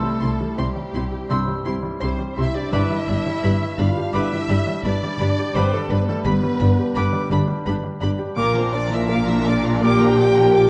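A hazy, worn-tape sound with warbly pitch drift colors this brief, wet-stage-reverberant fragment of a cinematic, emotional film score, cut from a longer piece and moving in a rubato 4/4 with a hopeful, uplifting mood. A felt-muted upright piano, soft and intimate with audible action noise, carries the accompaniment alongside a very quiet, focused viola section, while a mellow French horn section holds sustained chords with a smooth top. The melody sits high in a violin section with soft attacks and expressive vibrato, and a second violin line, a metal-toned airy flute with lifted highs, a very quiet clarinet and a distant, roomy cor anglais weave secondary lines around it. Below, dark, woody cello and double bass sections anchor the bass, the cellos set back in the background. The harmony moves from C to G at 2.7 seconds and settles on Bb at 8.4 seconds, giving the lush orchestral texture a gently lifting close.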